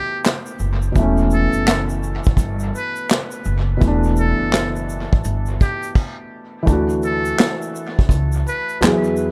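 Melancholic and nostalgic, this short lo-fi hip hop excerpt in E dorian sways at 84 BPM with a swung feel, as a buzzy, thin muted trumpet carries the melody with light vibrato over a soft, felt-muted upright piano whose action noise sits close and intimate. A vintage brush kit with dark cymbals, tight kick, handclaps and shaker enters at 0.2 seconds, and a woody, thumpy pizzicato upright bass on gut strings joins at 0.6 seconds. Dub echo trails the trumpet, piano and drums in a small-room mix, and the chords drift from suspended harmonies to a Dmaj7 at 6.7 seconds.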